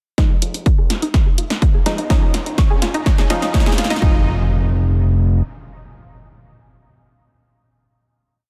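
Dense and heavily limited, with a light reverb, this short melodic techno piece feels dramatic and driving, built as a steady build that resolves into one final chord at 4.0 seconds. An overdriven, layered kick sits up front with a heavy four-on-the-floor pulse, while a punchy analog drum machine adds closed hats and a backbeat snare, re-recorded in a large room, overdriven and with sidechain pumping on the hats, all playing a drum fill across the build. A fat, saturated sawtooth bass with a fast attack carries a dotted-rhythm line, pumping against the kick through a high-pass filter. Above it, a round, detuned sawtooth pluck runs a bright 16-step arpeggiated sequence under a filter sweep, colored by analog chorus, sidechain pumping and dub echo, moving from Fm7 to Dbadd9/F and back. Deeper in the background, a muted, mellow chord stab with chorus and dub echo plays closely voiced held chords with syncopated pushes, while a riser and impact supply transition effects until the piece ends at 8.2 seconds.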